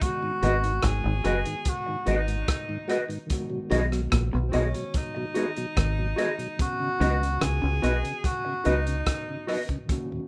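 Lovers rock reggae at 73 BPM, smooth and longing, cut from a longer piece: a clear, distant tenor saxophone with light vibrato and tape echo carries the melody over Abm7, B6 and Db9sus4, backed by a gritty, saturated breakbeat kit with dub echo on hi-hat, tight kick and rim click, a round, foam-muted dub bass up front, a tonewheel organ with key click and slow rotary speaker in the background, a very quiet mellow tine electric piano, dark clean guitar stabs, and a twangy, slightly broken-up lo-fi guitar riff, all in a rough home demo mix with light reverb.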